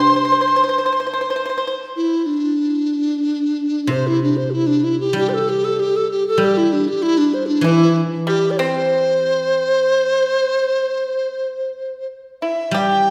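Rubato at 95 BPM in 4/4, this graceful, festive excerpt of Chinese traditional chamber music in C gong mode puts a mellow, hollow large dizi up front, its airy, buzzing-membrane tone and vibrato carrying the melody over ringing, silvery guzheng accompaniment, while a bright, percussive fingerpicked pipa adds a second line that drops out at 1.7 seconds and returns at 7.6 seconds, the ensemble set in a wet scoring-stage reverb heard from further back in the room.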